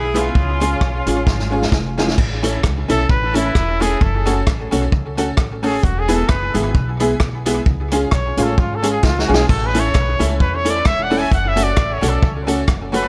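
Ska, cheerful and bouncy, at 131 BPM in 4/4 with a light swing on the eighths, in A major and cut from a longer piece. A clear, distant horn section opens with a brief, loose melody touched by tape echo, then falls away by 1.7 seconds. A punchy, up-front vintage drum kit with a medium-tuned snare, rim clicks, hi-hat, splash and crash cymbals sits in a small room, and it plays a fill into the trumpet solo that starts at 2.2 seconds. A breathy, whispered trumpet with light vibrato and a soft attack carries that solo, intimate and present, its tape echo trailing each phrase as the chords move from A through F#m and E to C#. Underneath, a woody, thumpy upright bass on gut strings, a dark, clean hollow-body jazz guitar and a jangly, metallic tack piano stabbing with tape echo keep the groove moving. A very quiet, crisp group handclap joins at 2.7 seconds, all under a light reverb.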